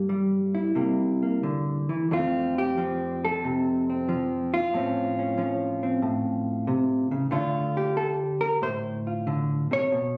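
Swung eighths in 4/4 drift with rubato through this short solo jazz passage, cut from a longer piece, as a lone hollow-body electric guitar moves from Gm and C7 into a longer stretch over Fadd9, Aaug and Dm7. The fingered tone is dark, clean and compressed, sitting up front and spanning F2 to Db5 with a swinging, warm mood. Captured on a phone in the room, the sound carries light club reverb around the guitar.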